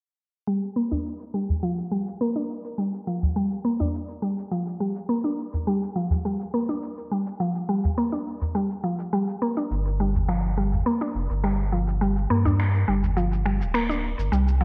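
A woody, up-front FM mallet pluck with chorus and delay spins arpeggios under a filter sweep from 0.5 seconds alongside gritty, gated-reverb shaker and finger snaps, joined by a deep small-room udu from 0.9 seconds and a round sine sub bass from 9.7 seconds as the chords move from Bb6/F to Gm7, giving this meditative, earthy organic downtempo excerpt at 104 BPM a bright 1980s-style digital sheen and plate-reverb glow.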